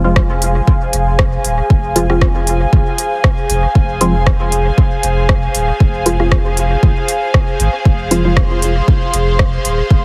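A heavily compressed, radio-like sound with light digital ambience frames this cavernous, hazy dub techno passage, cut from a longer piece, moving at 117 BPM in F minor with a gentle swing on the sixteenths. A punchy electronic kick sits up front from 0.2 seconds, entering alongside a deep house kit whose smooth hi-hats and rim clicks carry a dub echo. Beneath them, a clean, dark sine sub bass holds the low end and pumps against the kick. A muted, sawtooth chord stab with a plucky filtered attack decays through chorus, phaser and dub echo while a filter sweep runs across it for the full ten seconds. Above, an airy, breathy pad with a warbling, vintage, detuned character sustains soft chords on F minor, breathing with sidechain pumping and chorus.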